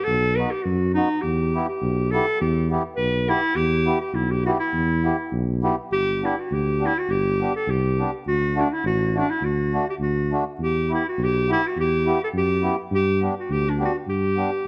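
Close, detailed microphones and light reverb give this short cut from a longer alpine folk dance-band piece a clear, intimate sound, tuned to A4 = 435 Hz. At 103 BPM in a lightly swung 2/4, a roomy clarinet carries the jolly, festive melody up front, a dark tuba holds down the bass beneath it, and a reedy accordion fills in the accompaniment at a lower level. The tune opens in E minor, then brightens into G major at 5.9 seconds, cycling through G, D and E minor before the clarinet ends at 14.7 seconds.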